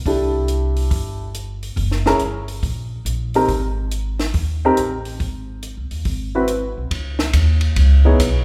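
Swinging and warm, this short excerpt of small-group jazz in the swing-and-bop tradition moves at 140 BPM in 4/4, with the eighth notes given a relaxed swing lilt. The upright bass sits up front, its plucked gut strings sounding woody and thumpy in a low register, while a baby grand piano supplies mellow, natural-sounding accompaniment in the middle of the keyboard. A compact cocktail drum kit plays hi-hat, kick, ride and snare at a lower level, its dry character marked by dark cymbals, a high-tuned snare and a punchy kick. The harmony passes through C6, Gb and Ab5 before tightening on an Ab7alt, and at 6.9 seconds a new section arrives on a Db7(no3). All three players are heard in a moderate recital-hall reverb with a 1.3-second decay, giving the trio the airy resonance of a church or concert hall.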